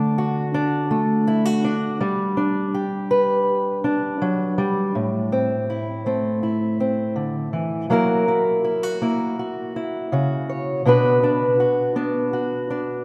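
A long, wet hall reverb surrounds this short folk excerpt, recorded in a church or concert hall, with a single fingerpicked old ladder-braced acoustic guitar sitting up front. The guitar sounds dark, woody and boxy, its old strings giving the melancholic, reflective mood a worn character. An opening phrase over D and G gives way at 4.9 seconds to a longer passage moving through Am, F#7 and Bm.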